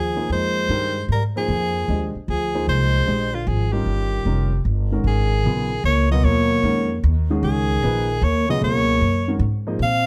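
A clear, close-miked soprano saxophone carries the melody up front, its light vibrato and scooped notes giving this cool, hypnotic jazz waltz its voice at 152 BPM in 3/4 with a swung eighth-note feel. Beneath it, a breathy, dark trombone sits in the background with a soft attack and whispered, roomy tone, adding an intimate second line. The upright bass is woody and thumpy, played pizzicato and placed up front, while a grand piano with short sustain supplies accompaniment from 0.2 s. The harmony starts in F dorian on Fm9, moves to Eb7 at 3.9 s, then shifts to G# dorian with a G#9sus4 at 5.1 s. Light reverb surrounds the group, and the passage is cut from a longer piece.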